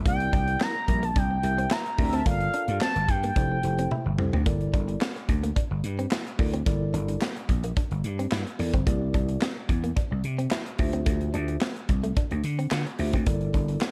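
Tape-saturated and bathed in studio reverb, this fragment of early-eighties boogie funk in G dorian moves at 109 BPM with a funky, danceable, straight 4/4 feel, built on a growly, punchy slap bass and an up-front drum kit of kick, snare, hi-hat, toms and handclaps under gated reverb. A mellow tine electric piano plays through chords such as C7, Gm9 and Fmaj9, while a bright, compressed clean electric guitar riff with lush chorus sits in the background. Up front, a smooth, expressive synth lead with vibrato carries the melody until 4.2 seconds, joined briefly by a dark, detuned synth brass line, before a drum fill at 3.9 seconds leads into the second section.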